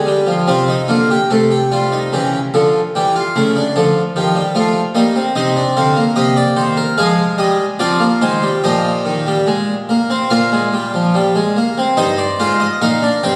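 A straight 4/4 pulse at 73 BPM carries this stately yet joyful baroque-style four-part fugue for solo harpsichord, an excerpt cut from a longer piece: the brilliant, plucked French-style harpsichord with three sets of strings sits close-miked and up front across a range from G2 to G5, captured on a phone in a concert hall whose reverb lingers for 2.2 seconds, while the harmony moves from C minor through D minor, settles in E-flat major from 5.4 s and passes through F minor seventh, with a new section arriving at 12.0 s.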